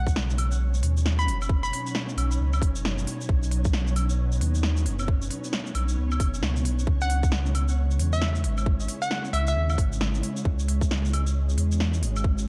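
A rainy, wistful future garage excerpt at 134 BPM in 4/4, with a 62% swing on the sixteenths and a vinyl crackle over a fairly dry overall sound. A deep, rumbling detuned saw bass sits up front and pumps against the tight, tape-warm electronic kick, while a garage kit adds a cracking snare, crisp hats, shaker and claves, both drum parts re-recorded in a large room. Beneath them, an ethereal pad holds sustained chords with a slow attack, ensemble chorus and its own reverb, breathing with sidechain pumping as the harmony moves from Badd9 to C#m7 at 6.9 seconds. A hollow, bouncy square-wave pluck carries the melody from 0.0 to 2.1 seconds and again from 7.0 to 9.5 seconds, colored by chorus, cassette tape and analog delay. In the background, a grainy, flickering granular texture drifts through its reverb.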